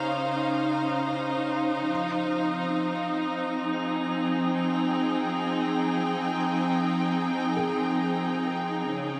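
A rich, bowed studio string section sits up front and holds smooth, even chords with vibrato across this peaceful, luminous ambient excerpt, moving from Dbmaj7 to Fm7 at 1.9 seconds. Underneath, a felt-muted upright piano plays very quiet arpeggios, its mellow, intimate tone carrying audible action noise before it drops out and returns at 7.6 seconds. In the background, a drifting glass-harmonics texture fades in on a single high Bb, its sine-like, glassy tone drifting with chorus and its own reverb, slow attack and long release. A huge, wet reverb with an 8.4-second tail bathes the music, giving the calm, straight 4/4 pulse an expansive, floating quality. The passage is cut from a longer piece, with the strings sustaining to 9.2 seconds.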